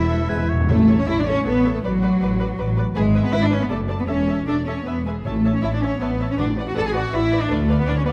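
Bathed in a moderate stage reverb, this spirited, graceful excerpt from a quick classical-period orchestral movement in A major at 159 BPM in 3/4, played with rubato, sets veiled, con sordino violin sections on the melody and a second line over a muted viola accompaniment, with dark cello and double bass sections up front on the bass, while a clear clarinet, warm trumpet stabs, a lightly vibrato oboe and a faint, pure silver flute flash by in the opening moments and hard-mallet timpani play a fill at 0.3 s and return at 5.2 s.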